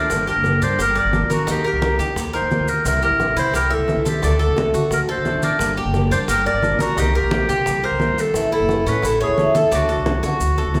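A clear, classical-style solo clarinet carries the melody up front from the start, over a dark, boxy fingerpicked swing-style acoustic guitar and a bright, metallic Cuban tres rolling out arpeggios on doubled strings, giving this short Cuban son and guajira excerpt a sultry, nostalgic mood. A woody, thumpy pizzicato upright bass joins at 0.1 s, along with soft-handed, low-tuned congas in the background, tight high-tuned bongos sitting very quietly at a distance, and grainy, mellow maracas. A drum fill arrives at 10.2 s, and a reverberant recital-hall ambience surrounds the ensemble as the chords move through minor and major harmonies.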